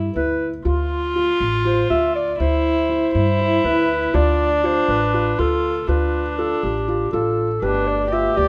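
Contemporary chamber music in a restless 7/8, this short excerpt cut from a longer piece moves at 241 BPM in eighths with a straight, pensive feel in D dorian. A mellow clarinet carries the solo melody from 0.2 seconds, sounding distant and roomy in a classical style, while a single viola bowed sul tasto sings a pure, floating second line up front. Beneath them, a felt-muted upright piano plays soft, intimate arpeggios with a dark, thick-felt tone and audible action noise, and a pizzicato upright bass on gut strings gives a woody, thumpy foundation near the listener. The harmony shifts between G6/D, Dm and Cmaj7/D before settling on Gadd9 at 7.6 seconds, where a clear woodwind section enters in the background with sustained chords and light vibrato. Close, detailed microphones and a light reverb frame the ensemble.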